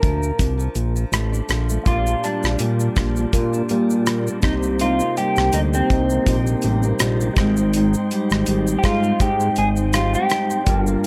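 A lightly swung 4/4 groove at 82 BPM rides on a dry, airy 70s drum kit with a tight kick, hi-hat, rim click and shaker, set up front beside a fat, detuned, saturated analog bass in this dreamy, nostalgic indie-pop piece in Bb major. A fingerpicked flamenco guitar with fresh strings and subtle chorus carries the accompaniment, and a mellow, flute-like tonewheel organ with key click and fast rotary speaker enters at 1.8 s. The lo-fi, slightly broken-up electric guitar through a small old amp, coloured by analog chorus and tape echo, leads the melody and moves into a solo at 1.9 s over Bb6, Cm7 and Abmaj7 chords, all within a light reverb.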